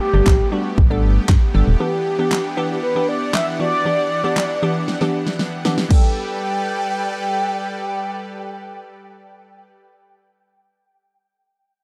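Summery and upbeat, this short dance-pop excerpt moves at 117 BPM in a straight 4/4, in G major, with chords shifting from Gadd9 to Em7 and back to Gadd9. A mellow, horn-like synth lead carries the melody with a round, vintage, warbling tone, soft attack and vibrato, colored by chorus and tape echo. Beneath it, a lush, detuned supersaw pad holds sustained chords that pump with sidechain, while a glassy, crystalline wavetable pluck adds nasal, digital accompaniment with chorus and the same pumping. A hollow, organ-like FM bass sits up front through the first 1.8 s alongside a very quiet downlifter sweep, and an electronic pop kit with a punchy kick, fat snare, handclaps and crash cymbal drives the groove before a drum fill from 4.9 s and its exit at 6.0 s. The production is dark and warm with light reverb, leaving the lead, pad and pluck to close out the passage.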